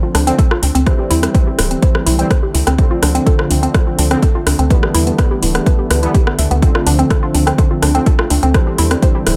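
A dry mix with an overdriven, deep kick up front sets the pulse for this dramatic, melancholic melodic techno excerpt at 125 BPM in D dorian, with a deep house kit of metallic hi-hats and rim clicks behind it. A woody, wave-folded pluck plays arpeggios under a filter sweep, with chorus, cassette tape colour, dub echo and sidechain pumping, while fat, nasal analog synth brass stabs and a tight, punchy sawtooth sequencer bass pump along over Dm7, C and Em. A very quiet, evolving analog drone enters at 0.6 seconds and sustains beneath everything.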